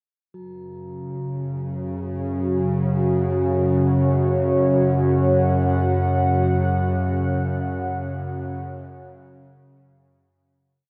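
A tense, string-like bowed drone with detuned sawtooth bite and vibrato sits up front from 1.0 seconds, joined at 1.7 seconds by a deep, warbling, vintage-toned pad of slowly shifting chords with chorus, while a very quiet bronze singing bowl, struck with a wooden striker, rings a high, metallic, slowly beating note from 0.3 seconds, all inside a huge, wet reverb that makes this whole dark ambient drone piece feel ominous and cavernous before it fades out from 5.5 seconds.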